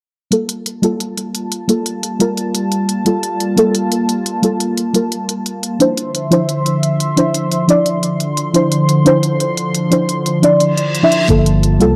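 Deep, mellow chord stabs and a lush unison pad open this rolling, soulful liquid drum and bass excerpt alongside crisp electronic hi-hats. The stabs are soft and nasal with a detuned, decaying pluck, colored by chorus and digital delay, and a filter sweep runs across them throughout. Around them the thick, detuned pad holds sustained chords with a slow attack and long release, its chorus-treated body pumping against a sidechain while its own filter sweeps. The harmony moves between Gm9 and Dm9, keeping the production dark and warm under a moderate plate reverb. A reverse cymbal rises in at 10.7 seconds, and at 11.3 seconds a knocking electronic kick lands alongside a smooth, up-front synth bass with a touch of vibrato, just as the piece is cut off.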